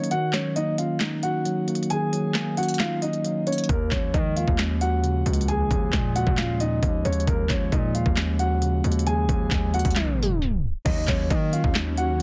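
A half-time trap beat at 134 BPM drives this menacing, dark hip hop piece, its overdriven kit of knocking kick, sharp snare, crisp hi-hats, handclaps and crash sitting up front while a boxy grand piano carries the filtered, delayed melody over a mellow, clean tine electric piano moving from Ebm7 to Bbm7, with a distorted, heavy 808 bass entering at 3.7 seconds, a tape stop arriving at 10.0 seconds, and a brief lush string stab and an ethereal, airy pad surfacing only in the closing moments of a dense, heavily limited master.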